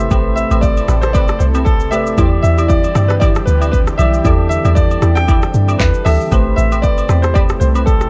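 A swung 116 BPM amapiano groove in 4/4 rides on an up-front deep house kit of deep kick, hi-hat, handclaps, rim click and shaker, with a round, percussive log drum bass sitting loudest in the mix and agogo bells and woodblock placed close and dry in the background. In A minor, moving from Am9 to Em7 and back, a clear, vintage grand piano carries the melody through tape echo. Beneath it, mellow electric-piano-like synth keys with chorus and a filter sweep accompany, a lush, detuned unison pad holds sustained chords, and a punchy sawtooth chord stab with chorus, phaser and tape echo enters at 0.1 seconds, all in a dark, soulful production with little reverb.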